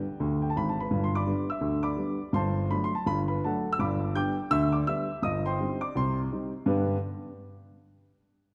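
Stride jazz in G major at 166 BPM, this brief excerpt cut from a longer piece swings with an exuberant 4/4 bounce on lightly swung eighths. A solo grand piano, natural and up front, covers G1 to G6 from 0.0 to 7.0 seconds, moving through G, D7/G and Cm/G before settling back on G. A wet concert-hall reverb and a dark, warm production give the sound a rich, spacious glow.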